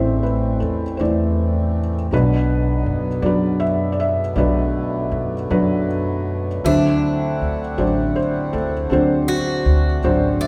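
A slow, swaying 6/8 pulse carries this melancholic, reflective acoustic folk-pop ballad, a fragment cut from a longer piece, as an intimate felt-muted upright piano sings the melody up front with a thick, mellow tone and audible action noise. Beneath it a reedy, breathing harmonium holds sustained chords, and a woody, thumpy pizzicato upright bass on gut strings anchors the low end through Am, Bm and then D7. The whole recording blooms in a church-like hall reverb. At 6.7 s a bright, picked swing-style acoustic guitar enters with arpeggios, and a short felt piano fill closes things at 10.0 s.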